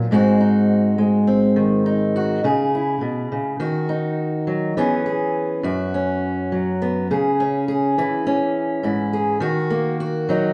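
A fingerpicked steel-string acoustic guitar carries this short folk excerpt entirely alone, sitting up front in the mix with a warm, concert-ready tone that spans from F#2 up to G#4. The mood is hopeful, moving at a steady 103 BPM in a straight 4/4 feel, and the tuning sits just a touch sharp of standard at A4 = 441 Hz. The harmony opens on G#7 and travels through C#m7, D#m, E6 and F#sus4 before a second passage begins at 7.1 seconds, returning to C#m and then D#m at 9.4 seconds. A generous, wet large-studio reverb surrounds the guitar, giving it a spacious, roomy halo as though captured live in one room. The fragment is cut from a longer piece and runs to 10.5 seconds.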